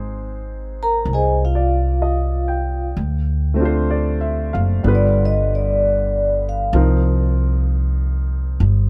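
A dry sound with little reverb frames this wistful, smoky swung jazz ballad fragment, where a mellow, ringing vibraphone played with soft mallets and a slow motor vibrato carries the melody up front from 0.8 s over a natural-toned grand piano accompaniment and a woody, up-front pizzicato upright bass, as the harmony moves from Ab through Dm7 and G7 to Cm7.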